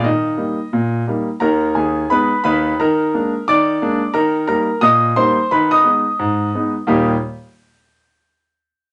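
Exuberant and swinging, this short stride piano fragment of a longer jazz piece features a lone concert grand carrying the whole performance from 0.0 to 7.1 seconds, spanning low bass to the upper register. The piano sounds clear and smooth with a deep bass and a vintage character, placed up front in a small, wet room with a short reverb tail. The harmony circles between major and minor colours over a steady Eb pedal, landing back home at 6.9 seconds.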